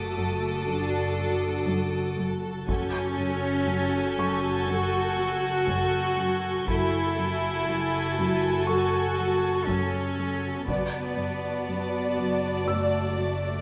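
A slow, straight 4/4 pulse at 60 BPM carries this ominous, mysterious suspense cue in F# minor, cut from a longer film score. Bowed strings played sul tasto fill the bed. A dark, woody violin section carries the high melody in the background, over a floating second violin line, a close, intimate viola section holding F#4, and a bowed double bass anchoring the low F#1. A pure, smooth-topped cello section sits up front as the bass voice, while a second cello section plays a low riff, and a rich, high violin section adds texture until 10.2 s. Behind them a mellow, roomy French horn section sustains chords, and a felt-muted upright piano adds soft, muted notes with audible action noise. A taiko ensemble struck with heavy sticks enters at 2.7 s, as the harmony moves from D/F# to F#madd9, settling on F#m near the close, all bathed in a scoring stage reverb.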